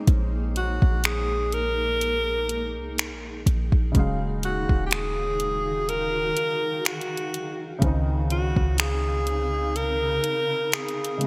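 A slow, sensual contemporary R&B groove at 62 BPM in 4/4 sways with a light sixteenth-note swing, its finger snaps, hi-hat and soft kick sitting up front in gated reverb, while a deep, boomy 808-style bass runs from 0.1 s to 10.2 s. A soft, intimate felt-muted upright piano coloured by analog chorus and a blurred, evolving granular cloud pad with its own reverb carry the longing harmony through Bbm11, Ebm11 and Dbmaj9. From 0.6 s a bright alto saxophone takes the solo melody in a jazz style, with light vibrato and scooped notes, sitting up front in this excerpt from a longer piece, which has bright 1980s-style digital production and a moderate plate reverb.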